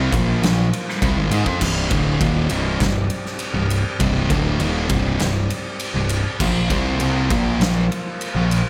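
A gritty, oversized low-tuned drum kit sits up front in this heavy, sludgy stretch of stoner and doom metal, its boomy kick, fat snare and dark crash and ride cymbals filling a big, pumping room. Two thick fuzz guitars play a riff together at 100 BPM in 4/4, one dark and set in the background, the other warm. Beneath them, a growling picked electric bass adds overdriven weight. A mellow, percussive tonewheel organ holds sustained chords through a slow rotary speaker, tucked behind the band. The harmony moves from Bb5 to C minor at 1.6 seconds and returns to Bb5 at 6.4 seconds, all under a light reverb in this brief cut from a longer piece.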